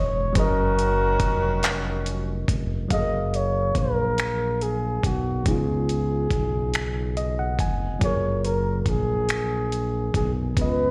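Heard through a venue's PA with a light recital hall reverb, this live slow R&B passage in 6/8 at 47 BPM feels tender and sensual, set in F# major and tuned to A4 = 443 Hz. A dark, breathy flugelhorn carries the melody up front in a jazz style, with scooped notes and a smooth top, colored by slapback echo and plate reverb. A worn, slightly out-of-tune tine electric piano accompanies through the same plate and echo, adding a fill at 6.7 s, while a smooth sawtooth-and-triangle synth bass sits low and dark with a fast attack and sustained notes. A warm, loose horn section with light vibrato and octave doubling plays stabs between 0.4 and 2.4 s. A dusty, sampler-style soul kit of finger snaps, handclaps, hi-hat and a thumpy kick sounds gritty, compressed and overdriven up front, under a harmony that moves through F#maj9 and C#9 in this fragment cut from a longer piece.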